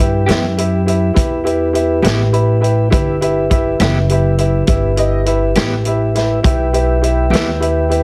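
This mournful, soulful slow blues in 12/8 opens with a slightly broken-up electric guitar through a small old amp, picked very quietly and sitting on a single G4 before it stops at 1.7 seconds. Around it, a clear, boxy baby grand piano, a woody pizzicato upright bass and a vintage drum kit with a punchy kick, medium-tuned snare and hi-hat stand up front over an E minor chord at 68 BPM. A mellow, flute-like tonewheel organ holds sustained chords in the background through a slow rotary speaker, while a dark, clean electric guitar, played with the fingers, adds accompaniment with harmonic tremolo from 0.3 seconds. The piano steps forward with a short fill at 2.0 seconds. Light reverb and a heavily compressed, radio-like sound give this brief cut from a longer piece a lo-fi, vintage character.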